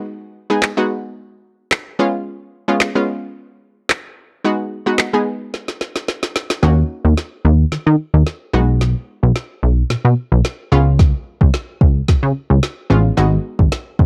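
A bright, round analog pluck with a vintage, chorused warble opens this bittersweet yet confident dance-pop excerpt, its sidechain pumping giving the chords a breathing pulse. A smooth R&B drum kit joins at 0.6 seconds with a soft kick, a woody snare and handclaps, sounding tape-warm and roomy yet up front in a dry, close 1970s-style studio sound. After a drum fill at 5.5 seconds, a punchy, funky analog bass of detuned sawtooth and square waves with a wave-folded filter pluck enters at 6.6 seconds and also pumps with the sidechain, driving a build-up as the harmony cycles through B6, Db7, Abm7 and Ebm7.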